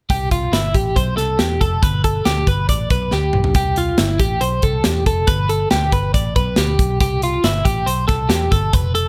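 Breezy and nostalgic, this short cut from a longer jangly indie pop piece moves at a brisk, straight pace in 4/4. A twelve-string electric guitar sits up front, playing clean, compressed arpeggios with a warm tone, colored by tremolo and tape echo. Beneath it, a vintage muted picked electric bass adds a dark, round, foam-muted low end. A modern studio drum kit, polished and airy with a tight kick and medium-tuned snare, drives the groove with hi-hat, kick, snare and toms. A drum fill from 3.1 to 3.6 seconds leads into a new section at 3.6 seconds, as the chords keep alternating between C and G under a light reverb.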